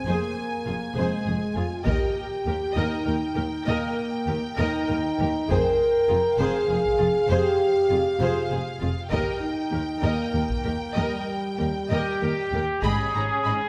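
Wet scoring-stage reverb surrounds this dramatic, heroic cinematic orchestral cue in 6/8, cut from a longer piece. Mellow French horns hold chords up front beneath a smooth violin melody with light vibrato and a lush second violin line, while close, expressive violas with portamento fill the middle and dark, woody cellos and double basses carry the low end over Fm and Eb harmonies. Distant taiko drums struck with hard sticks enter at 1.9 s, and a bright, tight trumpet section adds stabs at 11.9 s, shortly before the harmony moves to G#m.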